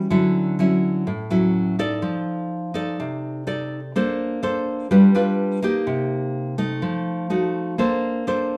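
A lone nylon-string guitar opens this sunny, relaxed bossa nova excerpt, fingerpicked in a classical manner with a full-bodied, up-front tone and audible finger squeak. Over about eight seconds it moves through lush harmony, from Dmaj9 and F6 to Bbmaj9, then through G7, Cm7 and F7b9 before settling back on Bbmaj9 at 7.8 seconds. A wet, large studio reverb gives the solo guitar a roomy, live feel.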